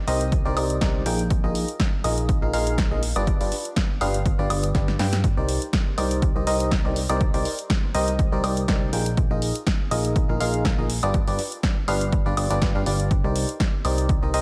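Piano house with an energetic, bittersweet mood, this short cut from a longer piece rides a lightly swung groove in 4/4. A barking FM electric piano carries the riff up front, its biting, percussive attack carrying a noise layer and decaying through chorus, sidechain pumping and tape echo. Beneath it, a plucky analog bass blends sawtooth, square and triangle tones with wave-folding and a funky filter pluck, pumping along with the sidechain. A dry, overdriven analog drum machine supplies hi-hat, punchy snare and woodblock, while an up-front electronic kick drum hits hard from 0.3 seconds, and a brief drum fill arrives at 4.7 seconds. The harmony cycles through Cm9, Bb7sus4 and G7, and a lush hall reverb gives the whole mix a dreamy, soaked atmosphere.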